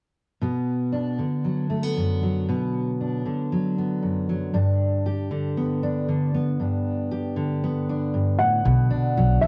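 A full-bodied, fingerpicked steel-string acoustic guitar carries this nostalgic, anthemic indie folk fragment from 0.4 seconds, its dark dreadnought tone and audible finger squeak colored by cassette tape, moving from B minor to G. Near the end a mellow, vintage upright piano enters at 8.4 seconds with a brief high melody, and a woody pizzicato upright bass joins at 8.7 seconds as the arrangement begins to build. All three sit up front in a wet booth ambience with the intimate feel of a home recording on cassette.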